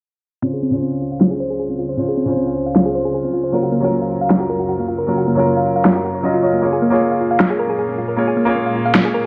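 A huge, tape-warm electronic snare sits up front in a half-time 4/4 feel at 155 BPM, entering at 1.2 s in this lush, playful future bass passage in Db major, cut from a longer piece. A present, polished grand piano and a round, nasal, tine-like synth pluck playing arpeggios both begin at 0.4 s, joined by an ethereal, detuned pad holding slow-attack chords through Dbmaj7, Gbmaj7 and Bbm7. A filter sweep runs across every part and a huge ambient reverb washes over the mix, while the piano and pluck carry delay and the pad adds a mellow ensemble chorus.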